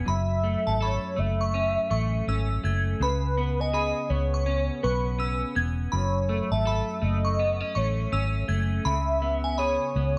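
A moderate studio reverb gives this mellow, wistful indie-pop and bedroom-pop fragment a soft sense of space, as a velvety, detuned synth lead carries the gently swung melody over a clean, picked electric guitar wavering with analog chorus and warbly pitch drift, while a glassy FM synth bell traces a crystalline second line high above and a dark, round, foam-muted fingered bass sits punchy and up front beneath chords moving from F#m7 through a third-less C#7 and F#m to C#m7.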